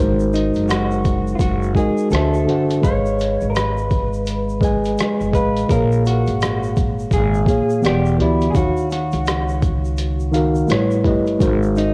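Reflective and hazy, this lo-fi hip hop excerpt at 84 BPM in Eb minor swings its sixteenths over a mellow, up-front tine electric piano and a woody, gut-strung pizzicato upright bass from the start, with a dark, slightly broken-up fingered electric guitar carrying the melody from 0.3 seconds, a grainy tube shaker sitting in the background, and a compressed, pitched-down trip hop sampler-style kit of thumpy kick, hi-hat and rim click arriving at 0.4 seconds with overdrive and 12-bit sampler grit, while cassette tape colour on the piano, guitar and drums and a light digital reverb lend the whole piece its home-recorded feel.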